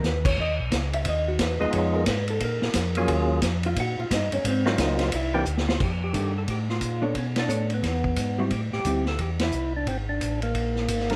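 Soul jazz organ trio in a soulful, bluesy swing, where a dark, picked hollow-body jazz guitar solos over the mellow, round tonewheel organ bass and a punchy vintage drum kit with dark cymbals, before a fat, lightly overdriven percussive tonewheel organ melody with slow rotary speaker enters at 1.6 seconds, and the band hits accents at 7.3 and 9.4 seconds in a light reverb.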